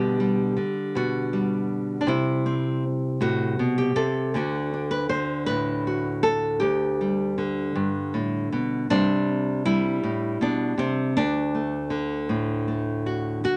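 Folk for a solo nylon-string guitar, peaceful and gentle, unfolding in an unhurried, straight 6/8 across this short cut from a longer piece. The fingerpicked, classical-toned guitar sits up front with a full-bodied, acoustic sound, and finger squeaks are audible, while a moderate studio reverb adds a little space. It moves through a simple cycle of G/B, C, D and G/D chords, ranging from low bass notes up into the upper register, and plays throughout the 13.6 seconds.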